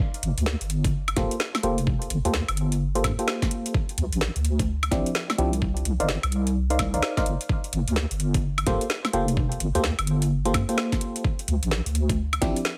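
Swung sixteenths give this skippy, moody two-step UK garage excerpt its bounce, as an overdriven garage kit of metallic hats, a woody snare and woodblock sits up front with a knocking electronic kick, while a deep, dark wobble bass with chorus rolls beneath glassy, bell-like FM electric piano stabs that carry chorus, phaser, delay and a filter sweep over Gm11, Dm11 and Cm11 chords, the mix squeezed into a heavily compressed, radio-like sound with light reverb.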